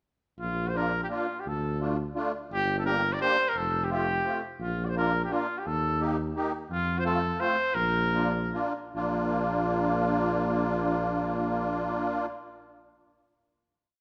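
A clear, distant trumpet carries a motif-based melody in classical style from 0.4 s to 8.5 s, in this short, festive and bouncy alpine folk dance piece in 3/4 and Bb major, moving at a rubato 139-177 BPM. Alongside, a reedy, shimmering musette accordion plays off-beat triad chords while a mellow tuba with light vibrato sounds root and fifth on the main beats. The tempo slows from 6.7 s into a final chord held in a moderate recital-hall reverb.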